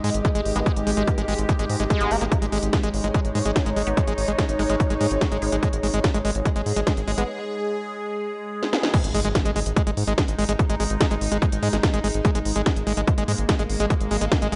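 Alien and intense, this psychedelic trance excerpt drives at 145 BPM in 4/4, built on a heavy, tape-warm electronic kick up front, a techno kit with cracking snare, smooth hats and crash, and a round, deep analog bass, while a screaming acid line, squelchy, distorted and bright with chorus and tape echo, pumps against a morphing wavetable pad phased in the background. An airy, breathy pad and a very quiet, juicy blip pluck add texture through the opening until 7.3 s, when a break and drum fill lead to a band accent. Electronic zap and impact effects enter at 8.7 s, just before the drop hits at 8.9 s, all under light reverb.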